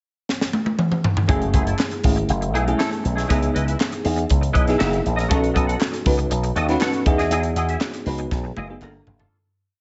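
A glossy, breezy slice of polished 1980s jazz-funk pop opens in a small room with a crisp fusion drum kit playing a fill from 0.3 seconds, its high-tuned snare and punchy kick bathed in gated reverb, before a bright, envelope-filtered slap bass, a sparkling bell-like FM electric piano with lush chorus and tremolo pushing rootless chords, and a twangy clean electric guitar with ensemble chorus fingering crisp sixteenths all enter at 1.3 seconds, joined by saturated handclaps on the backbeat in the background, as the pre-chorus moves through rich ninth and thirteenth chords and fades out behind a closing drum fill.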